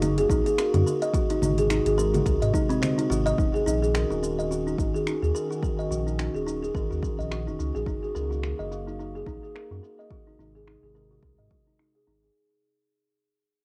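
A buzzing kalimba, a warbling pad, a sub bass and a deep house kit open this mystical, earthy organic downtempo piece together, in Eb dorian at 107 BPM with a swung 4/4 feel. The kalimba plays woody, hollow-bodied arpeggios that ring with a vintage, band-limited tone up front in the mix. Beneath it, a dark, warbling pad holds detuned, nostalgic chords with a sidechain pump, above a round sine sub bass that also pumps. The sub bass sits deep and up front. The deep house kit adds cabasa, congas, finger snaps and metallic hi-hats, and a punchy, overdriven electronic kick joins at 0.3 seconds. The kick drops out at 2.8 seconds, and from 3.4 seconds a filter sweep moves over the kalimba as the cut from a longer piece fades out over Ebm7, Gb and Ab7 chords. The sound has a lo-fi, cassette-recorded character with light reverb.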